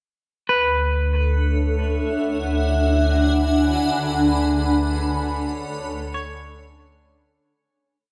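Ambient music, weightless and warm, drifting over a short, complete piece in 4/4 with a straight feel. A granular cloud pad enters at 1.2 seconds with cloudy, blurred, detuned chords that swell in slowly and ring out long, shifting from Dmaj7 to E7/D and then Bm7/D over a constant D in the bass. Up front, a bright, clean electric guitar picks scattered arpeggio notes through spring reverb and a diffuse ambient delay, while a round sine sub bass holds a deep sustained root beneath. At 4.0 seconds a reedy, breathing pedal harmonium adds a dark, mellow drone low in the mix, just as the whole piece begins to fade out. A wet concert hall reverb surrounds the parts, giving the short piece a hazy, suspended air.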